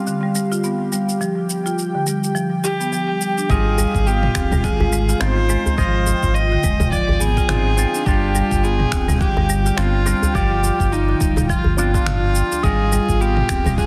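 Organic downtempo with a meditative, mystical air, cut from a longer piece, where woody, dark marimba arpeggios with grainy sampler grit and tape echo, a twangy envelope-filtered electric guitar, a mellow chorused pad in the background and an overdriven electronic kit of finger snaps, shaker and toms open the passage, before a biting, earthy kamancheh with light vibrato and portamento takes the melody from 2.6 seconds, a round, dark analog bass and a deep layered kick join from 3.5 seconds, and a very quiet, tight djembe enters at 3.8 seconds, all within light digital ambience and a heavily compressed radio-like sound.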